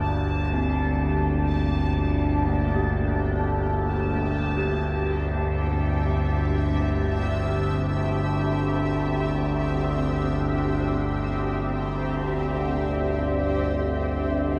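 Unsettling and cavernous, this dark ambient drone drifts in free time, cut from a longer piece. Up front sits a low sawtooth-and-sine drone whose resonant overtones sweep and evolve, thickened by chorus and its own reverb. Around it, a blurred, cloudy granular pad of detuned triangle voices holds sustained chords and fades in across the whole passage, while a high bubbling sawtooth texture moves through random filter steps and fades out over the same span. From 0.5 s, a very quiet, eerie FM bell with a vintage, warbling character traces inharmonic arpeggios, colored by chorus and phaser. A huge, wet reverb with an 8.6-second decay swallows the sound into a vast, shadowy space.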